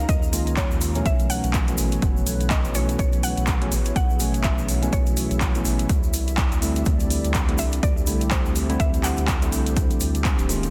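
Deep house with a soulful, relaxed swing, where a woody, bright mallet-like synth pluck carries the melody through chorus, cassette tape and tape echo over sustained suspended chords from a moody, detuned analog pad, joined by an ethereal airy pad texture in the background, both pumping with sidechain, while a round, deep analog bass, clean tine electric piano stabs entering at 0.3 seconds, a punchy overdriven electronic kick, a kit with handclaps and metallic hats, and a grainy egg shaker fill out a dense, heavily limited mix.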